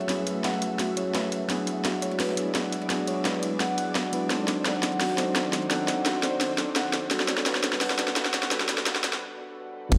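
Liquid drum and bass with a lush, dreamy mood, built as a build-up over F#m7, E7, D7b9 and Gmaj9, where a mellow tine electric piano with tape echo and a ringing, harp-like synth pluck arpeggio under a filter sweep float above an ethereal, warbling pad in the background that drops out at 9.2 s, all bathed in a lush hall reverb. A gritty, overdriven sampler-style kit sits in the background while an up-front drum and bass kit with a cracking snare and crash enters at 0.1 s amid a drum fill that leads into a brief break. At 9.9 s a deep, round sub bass and a tight electronic kick land as the excerpt cuts off.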